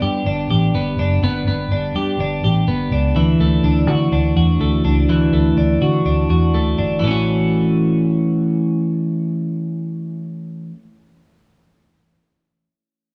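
A bright, twangy twelve-string electric guitar sits up front, picking clean, compressed arpeggios through lush chorus and analog delay across this nostalgic, youthful stretch of jangly indie pop, cut from a longer piece. Beneath it, a vintage foam-muted electric bass plays fingered, round and dark throughout, while the chords move from G to Dadd9 before settling on A6 at 7.0 seconds as a new section begins. Light digital reverb and the soft grain of cassette tape give the mix a faded, nostalgic glow.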